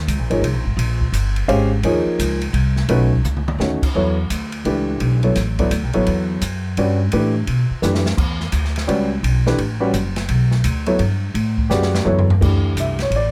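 Closely miked with light reverb, this short cut from a longer modal jazz piece moves at a searching, cool 170 BPM in a swung 3/4, with a woody, thumpy pizzicato upright bass on gut strings and a worn, slightly detuned upright piano full of intimate action noise both up front, while an airy, polished small-room drum kit with dark cymbals, a medium-tuned snare and a boomy kick adds fills, and the harmony settles into E dorian at 4.0 s.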